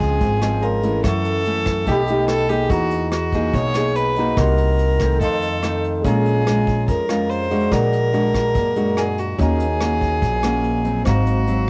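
Melancholic and intimate, this bossa nova cut from a longer piece moves at 144 BPM in a straight 4/4, with a home-recorded cassette character and the closeness of a small room. A rich, nasal fiddle sits up front as the second line, its bowed single voice earthy with a smooth top, while a fingerpicked nylon-string guitar in a classical manner and a bright, clean tine electric piano fill out the accompaniment. Underneath, a pizzicato upright bass with steel strings gives a woody, thumpy foundation, and a vintage brush drum kit keeps time with hi-hat, tight kick drum and rim click. The harmony drifts through rich jazz colours, opening on Dbmaj7 and passing through Emaj9#11 and an augmented Bbaug7 before settling toward Ebm7 and Ab13. The fiddle, guitar, piano and drums all carry a faded tape tint, lending the short passage a hazy, nostalgic intimacy.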